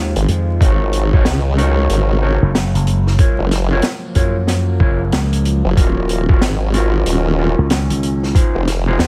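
A swung 4/4 groove at 93 BPM, with 63% swing on the sixteenths, drives this swaggering, gritty glitch hop excerpt in Eb minor, tuned slightly flat to A4 = 435 Hz. Up front, a pitched-down, compressed electronic kick thumps from 0.6 to 8.5 seconds with sampler grit and a tape-warm tone, while an open jazz kit of hi-hat and high-tuned snare adds a natural studio-room feel. Two basses share the low end: a bright, punchy slap bass shaped by an envelope filter growls across the whole cut, and a saturated, detuned formant-sweep wobble bass with chorus wobbles beneath it. A dark, clean, fingered electric guitar plays stabs from 0.6 seconds, roughened by vintage 12-bit sampler grit, tape echo and sidechain pumping. In the background, a warbling, nostalgic pad holds chorused, reverb-washed chords that pump with the sidechain, moving from Fm7 through Ab7sus4, Gbmaj7 and Ebm7 before returning to Fm7. 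The mix is dry and close, laced with vinyl crackle.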